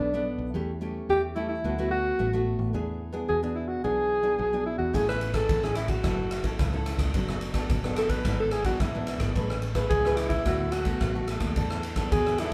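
Samba and choro come together in this festive, playful clip from a longer piece, played by a small band performing live in one large studio room with moderate reverb. A breathy alto saxophone carries the melody up front in a mellow jazz style, its smooth top and vibrato giving the solo line a singing quality. Underneath, a fingerpicked nylon-string guitar supplies warm, classical-style accompaniment, while a fingered electric bass sits dark, round and punchy with a foam-muted, direct sound. For the first 4.9 seconds these three play as a trio, and then a swinging big-band drum kit joins with kick drum, ride cymbal and rim click, its boomy kick and natural big-room sound placed up front. The harmony moves through colorful chords such as E7sus4, D6, Amaj7, F#m7 and Amaj9 before returning to E7sus4 at 11.6 seconds.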